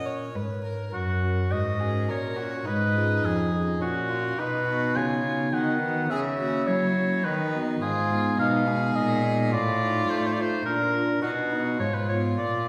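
From the opening moment, oboe, violin, organ and cello sound together in this grave, introspective baroque-style sonata movement in triple metre, cut from a longer piece. The clear oboe carries the melody up front in a classical solo manner, while a single period-style violinist with gut strings adds a second line with an airy, nasal bow tone just beneath it. A pipe organ on stopped flute registers supplies soft, hollow, mellow accompaniment with a romantic voicing, and the rich, reedy cello anchors the bass close and forward. The harmony moves steadily through seventh chords and inversions, passing through a minor chord around 7.8 seconds and closing on a diminished chord at 11.8 seconds. The ensemble is heard from further back in a recital hall whose wet reverb lingers around every phrase.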